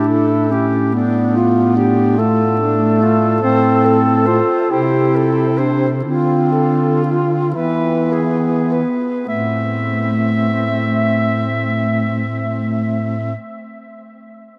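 A solemn, elegiac classical quartet of single reeds unfolds in a rubato 6/8 from the first moment, with a clear, close-miked soprano saxophone carrying the melody with vibrato and soft attacks over a mellow, smooth-topped clarinet second line, a distant, roomy tenor saxophone accompaniment with its own vibrato and gentle onsets, and an up-front, warm baritone saxophone bass, the pace slowing from 2.2 to 9.3 s before a new section begins, and the ensemble is bathed in a huge reverb that places this fragment of a longer piece in a vast, echoing space.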